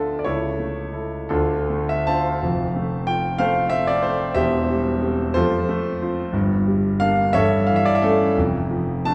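Romantic classical character piece for solo piano, this brief excerpt of a longer work runs from 0.0 to 9.1 seconds with a passionate, stormy mood. The concert grand is heard alone throughout, moving in 6/8 with an elastic rubato that lets the phrasing breathe. Its tone is clear and natural, with a deep bass reaching down to E1, tops reaching A5, and a long sustain that lets chords ring into one another. The harmony passes through dark minor shadings, with an A7/G at 7.3 seconds building tension before settling onto a rootless Dm/F at 8.4 seconds. The piano sits up front, while a wet recital hall reverb, captured from further back in the room, wraps the sound in generous, lingering ambience.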